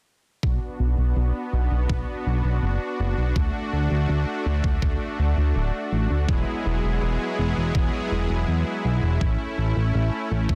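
Dense and heavily limited with a digital ambience, this moody, driving synthwave clip at 82 BPM in B dorian runs from 0.4 to 10.6 seconds, where a smooth, soft-attack detuned unison supersaw holds sustained chords through Bm, D, Eadd9 and A, and a fat, thick, wave-folded analog bass with a filter sweep, both up front and pumping to the sidechain, sits alongside a thumpy, tape-warm sampler-style electronic kick re-recorded in a large room.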